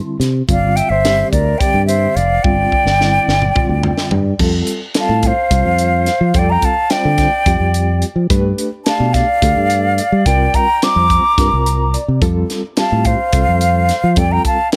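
Lightly reverberant, this slick, driving electric jazz fusion excerpt moves at 215 BPM in a straight 7/8, with a tight funk kit sounding small-roomed and punchy, its high-tuned snare up front beside a warm, amped fingered electric bass. A breathy, mellow silver concert flute carries the expressive, vibrato-laden melody up front, joined by a second, airy and more distant tongued flute line, while a reedy, clean electric piano with fast tremolo comps underneath. The drums fill from 2.4 s and the electric piano adds fills at 3.6 s and 11.4 s, as the harmony passes from G7sus4 through Fadd9, F69, G9 and C9sus4 to settle on Bb6/F.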